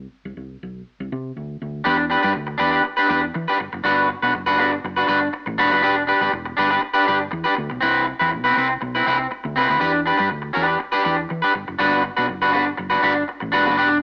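Danceable and sultry, this disco excerpt rides a straight 4/4 groove, opening with a dark, round hollow-body short-scale bass played with the fingers, its punchy tone sitting low in the mix. At 1.8 seconds a twangy, picked electric guitar at the edge of break-up joins up front with a subtle chorus, moving through minor-seventh and major-seventh chords. Light digital reverb, a thin AM-radio character and a faint mains hum colour the whole sound.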